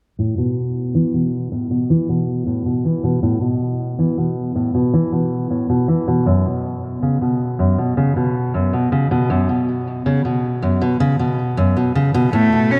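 A wet, reverberant soundstage frames this warm, delicate folktronica piece, where a full-bodied, up-front fingerpicked jumbo acoustic guitar with fresh strings plays arpeggios through a delay and a filter sweep over Asus2 and then Bsus2 at 6.3 seconds, and a rich, expressive bowed cello joins it at 12.3 seconds with a soft-attacked melody full of vibrato and portamento.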